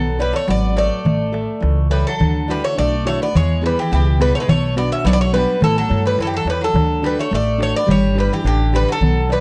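A dry, close recording in a 1970s studio style frames this short, hopeful and sunny excerpt of Greek folk bouzouki-band music, moving at 105 BPM in a straight 2/4 in D major. Up front, a metallic, double-strung bouzouki picks the melody while a second bouzouki plays a lower supporting line, over a full-bodied, fingerpicked nylon-string guitar and a thumpy, woody pizzicato upright bass that also sits forward in the mix. A small, high clay darbuka struck with hard hands enters at 0.2 seconds, as the chords pass from Bmadd9 and A through Dadd9, E, Bm, A and D before settling on G.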